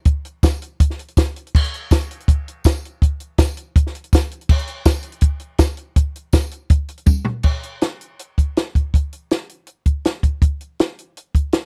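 A straight 4/4 rock beat at 162 BPM drives this moody, bittersweet fragment of a longer piece, played on a compact cocktail drum kit with a tight kick, high-tuned snare, hi-hat, toms and dark crash cymbals sitting up front in a dry, natural acoustic sound. A jingly, bright tambourine rings from a live room in the background until 7.2 seconds, just as a drum fill at 7.1 seconds carries the kit into a new section. The close, 1970s-style studio capture has little reverb.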